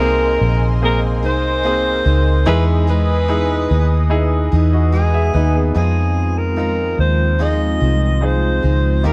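A breathy, whispered alto saxophone carries the melody in a soft, jazz-style solo with light vibrato, sounding distant and roomy in this tender, heartfelt pop ballad fragment. Beneath it, a clear, polished baby grand piano accompanies while a round, foam-muted vintage electric bass sits dark and up front, and a picked steel-string acoustic guitar adds arpeggios in the background. An airy, nasal pad with chorus holds mellow sustained chords behind everything, and the harmony moves from Abadd9 through Emaj7 to Fm7 at 5.8 seconds, all within a small room ambience.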